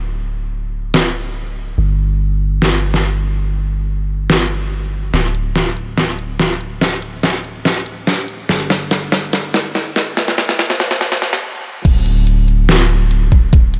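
Lightly reverberant and high-passed, this dreamy, lush future bass excerpt moves at 143 BPM in a half-time 4/4 feel. A deep, mellow 808-style bass with a sine-like tone and sidechain pumping opens the piece, and an overdriven pop drum kit with a deep snare, hi-hat and crash soon joins it, up front with a small-room character. From 5.1 seconds a build-up brings a drum fill and a filter sweep, then a brief stop at 11.4 seconds gives way to the drop at 11.9 seconds, where a knocking, overdriven electronic kick punches in alongside the bass and kit.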